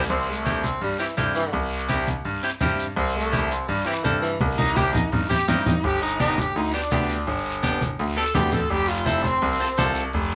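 A moderate studio reverb frames this joyful, festive cumbia fragment, where a clear, vibrato-laden jazz-style saxophone section carries the melody up front from 0.1 seconds over a bright, worn concert grand piano playing deep bass lines with audible action noise, twangy picked accompaniment from a clean electric guitar, thick-skinned, low-tuned congas struck with hard hands, and a raspy guiro, with a fill at 4.4 seconds and the harmony moving from C to G to F.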